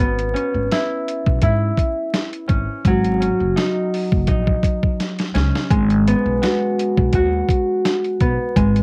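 A fingerpicked Celtic harp rings up front through cassette-tape coloring and high- and low-pass filtering, setting a reflective, moody tone in G# minor over a boom-bap hip hop groove at 84 BPM with a light 16th-note swing. Beneath it, a pizzicato upright bass with woody gut strings holds the low end, while a gritty, compressed, pitched-down sampler-style drum kit pushes a thumpy kick, medium-tuned snare and hi-hat forward. A drum fill from 5.0 to 5.7 seconds leads into a new section on a G#m7 chord, all captured as a dry home cassette recording dusted with vinyl crackle and cut from a longer piece.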